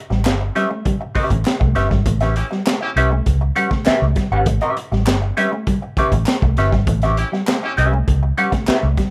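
A vintage hollow-body jazz guitar sits up front, its clean, picked tone run through wah and plate reverb as it comps between C#4 and F#5 across this strutting, playful funk excerpt at 100 BPM in A mixolydian, resting on a single A9 chord. Beneath it, a mellow electric guitar plays a low, fingered riff between G3 and A3, softened by subtle chorus. A vintage muted fingered electric bass supplies a round, foam-muted low end, while a crunchy breakbeat drum kit brings a gritty, saturated sound with a high-tuned snare, tight kick and rolled-off top. Group handclaps ring hollow and distant, as if in a large room. A clear, punchy horn section cuts in with brief second-line phrases at 2.4 and 7.2 seconds, carrying slapback echo and plate reverb, all within a rough home-demo mix with light reverb.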